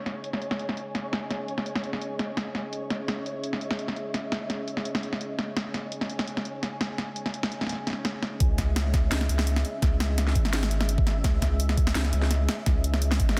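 Half-time drum and bass at 169 BPM in C# minor, this dark, cinematic cut opens on a moody, detuned analog pad with chorus and sidechain pumping, a grainy, flickering granular texture in the background, and an up-front, overdriven kit of cracking snare and bright hats, until a very quiet electronic swell at 7.8 seconds leads into the drop at 8.4 seconds, where a knocking overdriven kick and a thick, tube-saturated sine sub bass arrive under a dense, heavily limited master with light digital reverb.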